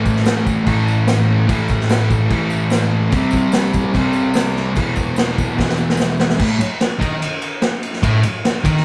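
A straight 4/4 at 147 BPM in A minor powers this swaggering, menacing garage rock excerpt, where a double-tracked fuzz guitar riff moves through A5, C5 and E5 up front over a tight-kicked vintage drum kit with dark cymbals, a faint jingly tambourine sits in the background until 6.2 seconds, and a drum fill at 5.6 seconds leads into a chordless closing section in a live room with light reverb.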